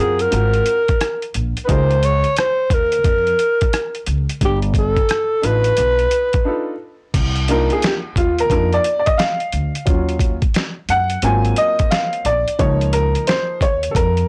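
A swung 88 BPM boom bap groove from a gritty, pitched-down sampler kit with a thumpy kick drives this cool, smoky jazz-hop excerpt, where a breathy, whispered alto saxophone with plate reverb carries the melody until 6.8 seconds over woody pizzicato upright bass and a boxy, short-sustained upright piano, and after a brief break the piano takes a solo from 7.1 seconds over chords such as Cm11, Ebm9 and Ab13, the whole recording blown-out and overdriven with vinyl crackle.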